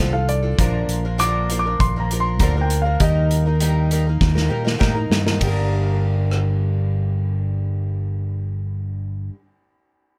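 Folk rock with a heartland rock lean, this short cut from a longer piece moves at 99 BPM in a straight 4/4 feel in G minor, with a reflective, wistful mood. A concert grand piano with deep bass and short sustain carries the melody high in its range, dressed in plate reverb and tape echo, before it falls away at 4.2 seconds. Beneath it, a picked twelve-string acoustic guitar with old strings gives a woody, boxy, shimmering, octave-doubled accompaniment. A fingered electric bass sits up front with a round, amped, punchy tone. A loose indie drum kit recorded in a small, pumping room plays hi-hat, kick, ride, rim click and snare, with a medium-tuned snare and a punchy kick up front, and it plays a fill from 4.2 to 5.4 seconds. The harmony moves from Dm through Bb and Eb, then settles on Gm at 5.4 seconds. Light reverb sits over the whole mix.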